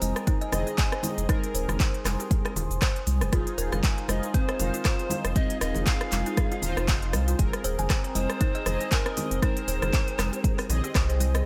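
This hypnotic, driving afro house excerpt at 118 BPM opens on a dark analog pad with chorus, a buzzing, woody kalimba arpeggio with 12-bit sampler grit and dub echo, brassy synth stabs with phaser, a round, deep analog bass up front, a layered deep house kit of cabasa, handclaps, smooth hi-hat and rim click, and bright background congas, all pumping to the sidechain except the drums and congas, before a tape-warm electronic kick lands at 0.3 seconds and a breathy, chiffy pan flute melody with dub echo enters at 4.1 seconds over swung sixteenths and Abadd9 and Fm7 chords.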